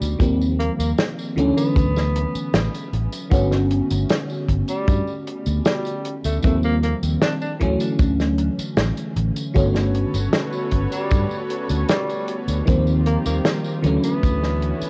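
A distant, mellow tenor saxophone with subtoned, scooped notes and tape echo carries the melody over a lush, detuned FM electric piano with a soft pad layer, phaser and chorus, a growly, up-front fingered bass with tube saturation, and a roomy soul kit of tight kick, medium-tuned snare, hi-hat and tambourine roughened by 12-bit sampler grit, in this woozy, dreamy 77 BPM vaporwave excerpt in G lydian that cycles through Eb69, Dmaj9 and Gmaj9#11, with an intimate chamber string section bowing sul tasto with light vibrato from 9.6 s, all in a small room under worn, warbling cassette pitch drift before fading out from 13.7 s.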